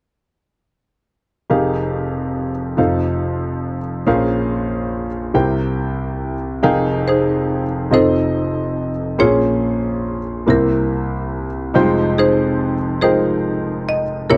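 A dry, close 1970s-style studio sound with a touch of studio reverb frames this soulful, fervent gospel passage, cut from a longer piece, in F minor and a slow 6/8 at 47 BPM, where an up-front concert grand piano with clear tone and deep bass lays down Fm11, F7, Bbm9 and C7 chords from 1.5 seconds and a dark, woody marimba carries the melody from 7.1 seconds.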